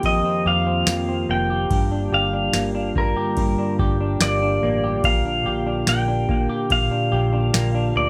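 A bright, twangy pedal steel guitar played with fingerpicks carries the melody up front with slide, volume swells and delay in this dreamy, blissful dream pop passage, over a dark, hollow-body semi-hollow electric guitar's clean fingered arpeggios drenched in lush chorus and delay, a soft, flute-like tonewheel organ with key click holding chords through F9sus4, Gm7 and Bb6, a round, foam-muted fingered bass, and a booming analog drum machine with deep kick, crisp snare, ride and tambourine that drops out at 7.7 seconds, all set in moderate studio reverb.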